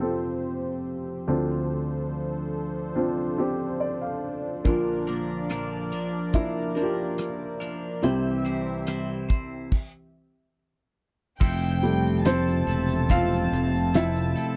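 This heartfelt, emotional pop ballad moves at a slow 71 BPM in F major, tuned slightly low to A4 = 438 Hz, and is cut from a longer piece. A dark, woody upright piano sits up front from the start, with a smooth, detuned sawtooth pad carrying sustained chords through a chorus effect, over a progression that moves from Fsus2 through Dm7, Bb and C. After a piano fill around 3.4 seconds, a twangy, clean electric guitar enters with compressed, picked arpeggios colored by phaser, and a damped 70s drum kit arrives with a fat snare, tight kick, rim click, hi-hat and dark cymbals. The band stops at 9.7 seconds, and at 11.4 seconds a new section lands on Fmaj7 with a piano solo, joined by a floating, sul tasto violin section on a high second line, a growly, punchy fingered electric bass on low notes, and a grainy egg shaker in the background. The sound is a dry, close 1970s-style studio recording with little reverb.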